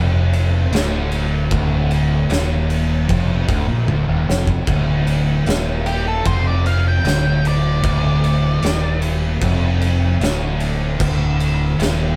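A slow, straight 76 BPM stoner and doom metal groove in 4/4 and D minor is driven by an oversized, low-tuned acoustic drum kit with a punchy kick, dark cymbals and a gritty, pumping big-room sound, sitting up front beside a bright, overdriven fingered bass that growls. Three picked fuzz guitars grind out the brooding, hypnotic riff beneath them: one double-tracked and very quiet, one thick and very quiet, and one thick, dark and distorted in the background. After a drum fill at 3.9 seconds, a distorted octave-fuzz lead guitar sings a shadowy melody from 5.9 to 9.0 seconds, all captured as a band playing live in one room with light reverb in this fragment of a longer piece.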